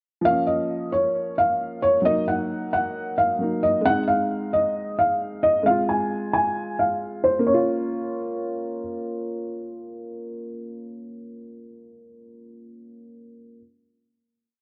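Dark and melancholic, this short hip hop and trap piece moves at 133 BPM with a half-time feel in Bb minor, cycling through Bbm, Ebm, Ab and Fm before settling on a final Bbm chord at 7.5 seconds. Up front, a felt-muted upright piano carries an intimate looping melody with audible action noise and short sustain until 8.8 seconds. Beneath it, a worn, boxy grand piano holds close-voiced chords until 13.6 seconds; both pianos repeat like sampled loops, softened by a low-pass filter and set in a moderate concert hall reverb.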